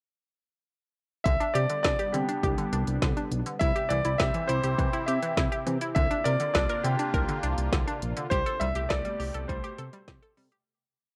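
Synth-pop at 102 BPM in a straight 4/4, this short, wistful yet upbeat piece moves through a single pre-chorus over the chords G/C, C, Bbadd9/C and Am7/C. A clear, intimate concert grand piano carries the hook-based melody from 1.2 seconds, up front and polished, with long sustain and audible action noise. From 1.3 seconds, a deep house drum kit with a deep kick, woody snare and smooth hats drives a straight drum-machine beat, and a dark sawtooth-and-square synth bass holds the low end with a sequenced line touched by vibrato. A round, detuned analog pluck spins sixteenth-note arpeggios in threes, coloured by ring modulation, a filter sweep, chorus and analog delay. From 1.7 seconds, a swirling, evolving analog pad sustains chords through phaser and chorus. The whole piece has a gritty, cassette-tape character in a digital ambience, and it fades out from 8.3 seconds.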